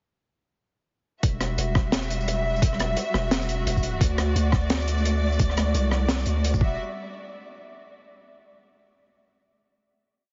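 A gritty, overdriven electronic kick, pitched down and thumpy, anchors this tense, dark half-time drum and bass piece, whose drop begins at 1.2 seconds alongside a crunchy breakbeat kit of rim, shaker, closed hat and a high-tuned snare, all saturated and rolled off up top. A deep, mellow sine-like 808 bass plays chopped phrases under a lush bowed string section that holds expressive chords with vibrato and portamento, pumping against the sidechain as the harmony moves between Emadd9 and D. From 4.4 seconds a faint, flickering granular texture holds a high note in its own reverb before the drop gives way to a final hit at 6.8 seconds, all within a heavily compressed, radio-like sound.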